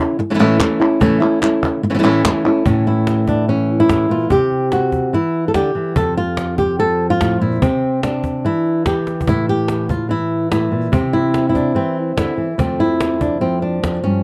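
Dramatic and passionate, this flamenco excerpt moves at 145 BPM in a straight 4/4, cut from a longer piece. A fingerpicked acoustic flamenco guitar carries the melody from the first moment, sitting up front with a warm tone and ranging from F2 to A4. The cajon enters at 0.4 seconds with a woody sound, faint snares and the air of a live room, while crisp palmas hand claps in a small-room setting join it until 2.7 seconds, when the opening section gives way to a longer second passage. The harmony moves through A, C, F, C, A5, C and F, and the cajon adds a fill at 9.1 seconds. The recording has the dry, close character of a 1970s-style studio session touched by light reverb.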